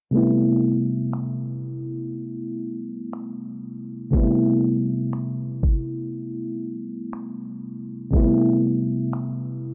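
A slow, straight 4/4 pulse at 60 BPM arrives at 1.1 s as an electronic R&B kit of finger snaps and a knocking kick sits up front beneath a round, dark FM electric piano, soft and fast-attacking with chorus and a faint noise layer, sounding an Am9 chord in A minor, giving this sensual, longing contemporary R&B fragment a gritty, dry hardware sound touched by light reverb and a filter sweep that runs through its whole length.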